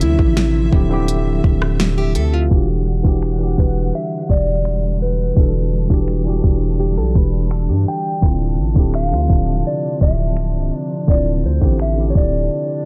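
Sensual and moody, this contemporary R&B cut moves at an unhurried straight pace, with a smooth, up-front electronic drum kit of soft kick, fat snare, finger snaps, rim clicks and hi-hat sitting over a deep, sine-like 808-style bass whose long notes decay after a fast attack. A dark, clean electric guitar carries the melody through lush chorus and digital delay, while a worn, slightly out-of-tune tine electric piano and an intimate, bowed string section played sul tasto hold the harmony between Dm9 and Em9. A picked, plugged-in steel-string acoustic guitar adds delayed arpeggios with audible finger squeak from 2.0 to 8.2 s, a filter sweep runs from 2.5 s on, and a brief break arrives at 12.5 s in this dry, dark, low-passed production.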